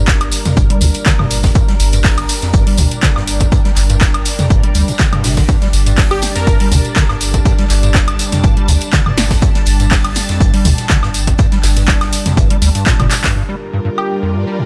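This excerpt of raw, driving acid house opens at 122 BPM in G minor, with a vintage string machine holding lush sawtooth chords that pump against the beat while a squelchy, resonant square-wave acid bass riff runs beneath, overdriven and thickened with chorus and delay. A round sine sub bass anchors the low end, and an overdriven electronic kick sits up front, re-recorded in a large room alongside a punchy analog drum machine supplying handclaps, hi-hat, snare, toms and woodblock. A loose acoustic kit with hi-hat, shaker and a fat snare stays very quiet, and a jingly tambourine sits in the background, all riding a light 16th-note swing over a single G minor chord. A catchy, detuned unison lead with a filter sweep and delay flashes in briefly at 6.1 seconds. After a drum fill at 13.1 seconds, a bowed symphonic string section with expressive vibrato enters at 13.4 seconds for the closing moments.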